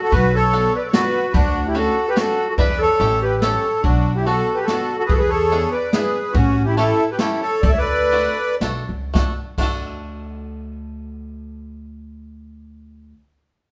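The reedy accordion leads this nostalgic, charming musette waltz in D major, its light tremolo tuning giving the melody a sweet, dark sheen up front in the mix. A breathy clarinet with subtone and light vibrato carries a vintage second line beneath it, and both play until 8.6 seconds. A woody, thumpy upright bass plucked pizzicato anchors the 3/4 swing, while a jazz kit played with brushes adds a boomy kick, a medium-tuned snare and dark ride and crash cymbals until 9.7 seconds. A bright, twangy bluegrass banjo, played with fingerpicks, enters at 0.5 seconds and supplies percussive accompaniment to the end, with chords moving from Bm7 and Dmaj7 through E7 and A7 before settling on D. The tempo ranges from 106 to 147 BPM and slows from 6.3 to 9.1 seconds. The drums continue briefly after that, and then the bass and banjo carry the passage to its close. It is all heard as a band playing live in one room with a wet studio reverb, cut from a longer piece.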